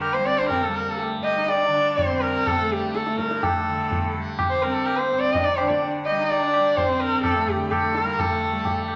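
A warm, up-front sarangi sings with light vibrato, soft attack and gliding portamento over a bright, buzzing tanpura drone and a high-tuned tabla with a short ring, while a second, rich-toned sarangi traces an expressive lower line, all in a longing, meditative fragment of Hindustani classical music in five beats that speeds up throughout, bathed in wet studio reverb.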